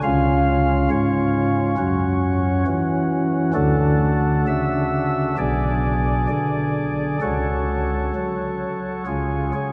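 Dark and grave, this brief cut from a longer classical chorale-style piece moves at 64-69 BPM in a straight 4/4 in F# minor, with a solo pipe organ playing alone on soft flute stops for the full 9.7 seconds. The organ sits up front with a baroque voicing, chiff and a tremulant, ranging from B1 to E#5 through a sombre progression that starts on C#, passes through D and G#dim/B, and returns to C#. A long, wet cathedral reverb with a 4.7-second decay surrounds the organ in a vast, stony space.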